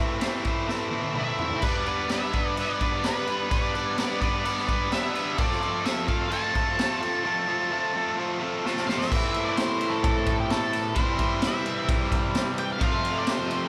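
Raw and swaggering, this garage rock excerpt at 129 BPM opens with a bright, double-tracked overdriven guitar riff up front, joined at 0.2 seconds by a saturated, gritty drum kit with a high-tuned snare and punchy kick in a roomy, live-band sound, while a dark octave-fuzz lead guitar carries the melody from 1.2 seconds over chords moving from Am through G and F, with drum fills marking the shifts into new sections.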